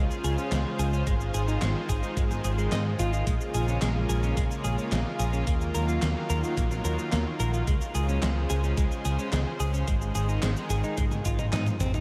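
Synthwave with a nostalgic, cinematic mood, this cut from a longer piece moves in a straight four-beat feel through a dreamy mix soaked in a huge ambient reverb. A lush, detuned sawtooth pad holds sustained chords with a slow attack and long release, its warbling chorus and sidechain pumping giving it a vintage shimmer beneath a clean, compressed electric guitar that picks arpeggios through analog chorus and tape echo. Up front, a picked electric bass sounds bright, growly and punchy, pushed by tube saturation and the same sidechain pumping. A gated digital drum machine enters at 0.1 seconds with cabasa, handclaps, hi-hat, toms and an overdriven, gated-reverb snare, while a layered, knocking electronic kick with a tape-warm character and small room reverb joins at 1.1 seconds. The chords cycle from Dbmaj7 through Ab6, Bbm7 and Ebmadd9 before returning, and a drum fill closes the passage at 11.0 seconds.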